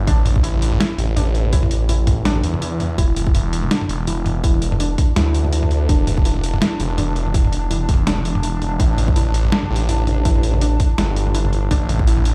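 Heard as though played over a big sound system in a bare room with a large studio reverb, this heavy, spacious half-time drum and bass excerpt moves at 165 BPM with a swung sixteenth feel, sitting on A5 and Dsus2/E chords. A swirling, thick, detuned saw bass with a phaser sits up front, alongside a hard-clipped electronic kick and a gritty, overdriven, pitched-down sampler-style kit with a high-tuned snare, hi-hat and toms. A dusty, warbling lo-fi pluck spins chorused arpeggios through dub echo, and from 3.2 s a pulsing, tempo-synced gated texture hovers in the background.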